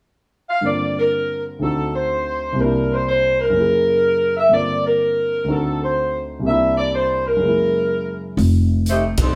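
Joyful and brassy, this excerpt of big band swing at 124 BPM features a roomy, lightly vibrato saxophone section carrying the melody over short-sustained, deep-bassed concert grand piano chords cycling through Gm7, D7b9, C9 and Gb9, before a woody, growly upright bass and a swinging drum kit with a punchy kick, hi-hat and ride join at 8.4 seconds on F9 for a band accent at 9.1 seconds, all in a wet studio room.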